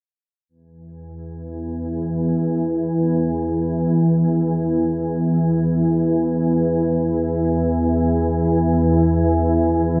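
Unmetered and free in time, this ambient excerpt drifts in a desolate, ominous mood. An organ-like drone enters at 1.2 s and holds through to 10.0 s, sitting up front and spanning E2 to E3 as one unison voice. Its sine-based tone is warbling, detuned and vintage, shaped by a slow attack, long sustain and long release, with an ensemble chorus and its own built-in reverb. The whole piece is bathed in a huge, wet ambient reverb with an RT60 of 8.7 s. The production is dark and tuned to A4 = 442 Hz, and the fragment is cut from a longer piece.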